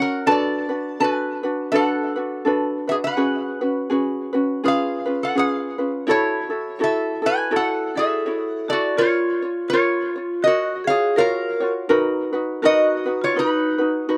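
A lap resonator guitar, played with fingerpicks and slide, carries the melody up front with a nasal, metallic voice and a touch of slapback echo. This sunny, languid Hawaiian piece has a gentle swing to its eighth notes. A mellow ukulele is fingerpicked close beside it for the whole passage, giving a light acoustic accompaniment. At 8.0 seconds a vibraphone with medium hard mallets and its motor off slips in beneath as a second line, with a dark, smooth, ringing tone. From 9.0 seconds the harmony brightens from minor to major, moving through major-seventh chords. The outdoor recording is dry and close, with little reverb, and the passage is cut from a longer piece.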